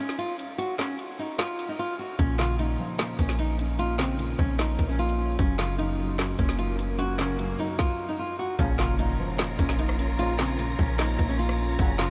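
A fingerpicked nylon-string guitar carries the melody of this eerie, hard-hitting trap cut, sitting up front with a classical touch softened by a low-pass filter and an analog delay. A produced electronic kit backs it in a half-time feel, with a hard-clipped kick, woody snare, metallic hats, rim clicks and handclaps that have a tape-like glow. At 2.2 seconds a deep, boomy 808-style bass arrives, clean and sine-like with a fast attack, alongside a dark, boxy grand piano whose short-sustain chords pass through chorus and a low-pass filter. A quiet electronic swell begins at 6.7 seconds and lands on an impact at 8.6 seconds, where lush symphonic strings enter with vibrato and portamento, joined by very quiet, distant brass stabs played loosely in a classical style. The whole mix is soaked in a huge ambient reverb that gives it a dreamy, eerie atmosphere, and the clip is cut from a longer piece.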